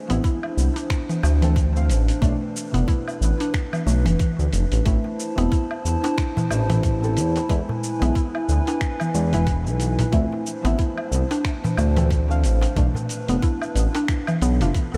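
A smooth, nasal synth bass sits up front in this hypnotic organic downtempo excerpt at 91 BPM, joined by a tight, tape-warm electronic kick and a gritty, overdriven sampler-style kit of cabasa, finger snaps, hi-hat and woodblock, with a crisp, close darbuka entering at 5.0 seconds. A woody, round mallet-like pluck carries arpeggios through chorus and tape echo, while a soft, dark chord stab with tape echo and a warbling, nostalgic tape-like pad pump under sidechain, cycling through Dm7, Bdim, Am and E. The mix sits in light reverb with a swung, loping sixteenth-note feel.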